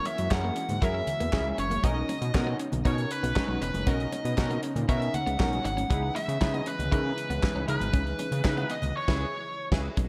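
A dreamy, reverb-soaked mix with a moderate plate and studio ambience frames this short excerpt of early-eighties boogie funk, moving at 118 BPM in a straight 4/4 with a funky, late-night mood in C# dorian. Up front, a damped 70s drum kit sounds dry and dark, with a fat snare, tight kick, hi-hat, handclaps and crash cymbal, while high-tuned congas with a thick skin sit very quietly beneath. A saturated, detuned analog bass built from sawtooth and square waves carries the low end with a fast attack and a filter sweep. The harmony moves from F#9 to Bmaj9 at 1.8 seconds and to C#m7 at 5.9 seconds, voiced by a punchy, bright polysynth comp with a wave-folded filter pluck and chorus, a smooth, warbling vintage pad with slow attack and long release, and a clean, compressed electric guitar riff drenched in lush chorus in the background. Over it all, an overdriven lead guitar with a nasal parked wah and delay sings the melody, and the band lands a shared accent from 9.0 seconds to the close.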